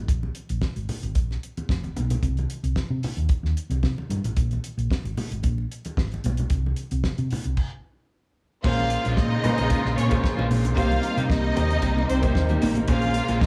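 Driving and danceable, this disco excerpt moves at 112 BPM in Bb dorian, opening with a round, punchy hollow-body bass and a dry, damped 70s drum kit with a fat snare and tight kick, both up front, while low-tuned, thick-skinned congas sit in the background. After a stop around 7.6 seconds, the arrangement fills out at 8.6 seconds with a smooth studio violin section on a second line, a boxy grand piano with audible action noise, a slightly broken-up electric guitar with tremolo, and lush symphonic strings holding sustained chords with portamento. It all sits in a small room ambience, with the closing section moving from Bbm7 to Cm7 and back.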